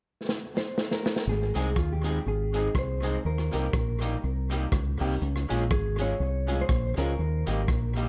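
A dark, lightly reverberant production carries this joyful, cheerful ska excerpt at 122 BPM in Ab major, with a swung eighth-note feel. A crunchy, gritty breakbeat drum kit sits up front with dub echo and opens with a fill at 0.3 seconds, and a round, punchy fingered bass enters at 1.3 seconds as the chords move through Ab, Eb and Db. A mellow, compressed electric guitar carries the melody with dub echo, while from 1.5 seconds a twangy, slightly broken-up guitar through a small old amp plays accompaniment and a woody, boxy upright piano adds stabs.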